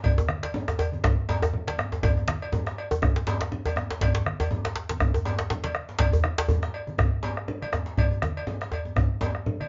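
A deep, dark bombo opens this short cut from a longer West African drum ensemble piece, sounding close and dry at the front alongside low-tuned congas, a metallic cowbell and a djembe with buzzing metal rattles. A second djembe joins at 0.2 seconds, tight and cracking, struck with hard hands and placed up front with its own rattling metal jingles. The first djembe has a warm, deep body in a live-sounding space, while the thick-skinned congas are played with soft hands in a smaller room and the band-limited cowbell has a vintage edge. The groove sits in 4/4 with a swung sixteenth-note feel, giving the powerful, earthy mood a loose, rolling lilt. The ensemble plays live in one room under a wet studio reverb, and the recording's treble stops short of the highest frequencies, lending the whole 9.7-second passage a dusky, grounded character.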